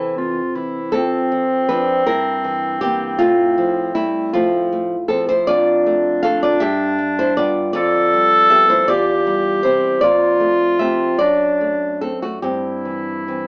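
A classical clarinet sings a tender, serene melody over dark, fingerpicked nylon-string guitar with audible finger squeak in this romantic duo excerpt, a rubato 6/8 at 52 BPM that settles into C major from 5.5 s, the distant, roomy clarinet and the small-sounding guitar both up front in a moderate studio ambience that feels like a live take in one room heard through a small speaker.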